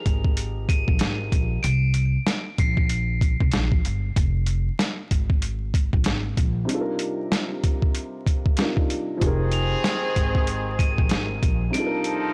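A gritty, pitched-down boom-bap drum kit with a thumpy kick sits up front beside a woody pizzicato upright bass in this moody, tough hip-hop excerpt, while a dark, boxy upright piano with audible action noise and a sparkling, bell-like glockenspiel come and go over a blown-out, overdriven mix with vinyl crackle, and a distant, roomy jazz horn section adds stabs from 9.2 seconds.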